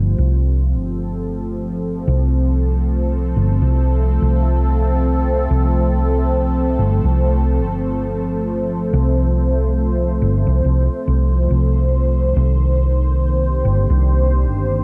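A hazy, meditative ambient dub piece opens with two parts together: an analog pad holding sustained chords and a hollow-body short-scale electric bass played with the fingers. The tempo sits at 70 BPM in 4/4 with a 59% swing on the sixteenths, and the tuning is set to A4 = 438 Hz. The pad, spanning Eb3 to C5, has a smooth sawtooth tone, its detuned voices thickened by chorus and a moving notch, with a soft attack and a long release. The bass stays low, between G1 and C2, with a round, amped, up-front sound that sits louder than the pad. The harmony rests on F until 12.4 s, then shifts to Cm9 for the final stretch. Light reverb and a dark, warm production surround the whole passage.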